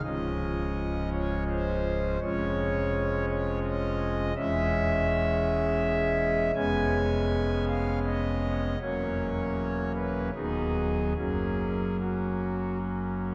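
Classical chorale-style music for solo pipe organ, reverent and majestic, moving in a flexible, rubato three-beat pulse through this 13.3-second excerpt cut from a longer piece. The organ's foundation stops sound warm, thick and romantic in voicing, sitting up front and reaching from the deep bass into the upper register. A long, wet church reverb surrounds the playing as the chords travel from the home harmony through shifting colours before settling at the close.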